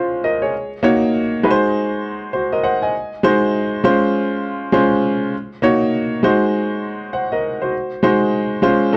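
This dry, close recording has the feel of a 1970s studio, with the concert grand piano placed up front and sounding natural. It is a short R&B piece cut from a longer performance, slick and punchy in mood, moving at 100 BPM in 4/4 with a 62% swing on the sixteenth notes. The solo piano plays throughout, from 0.0 to 9.0 seconds, ranging from Ab3 to Ab5. Its tone is clear, with a deep bass and a short sustain. The harmony cycles through Dbmaj7, Ebm7 and Ab7, returning to Dbmaj7 at 3.8 and again at 8.6 seconds.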